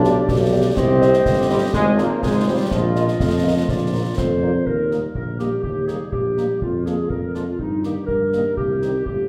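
Spirited and rousing, this military-style march for wind band sets a soft-edged, shadowy trumpet section's melody in the background beneath a vibrato-rich woodwind second line up front, with mellow French horns accompanying, punchy vintage trombone chords sustaining until 4.4 seconds, a roomy tuba bass, and concert snare, bass drum and dark-toned clash cymbals, all heard from further back in a wet, large studio.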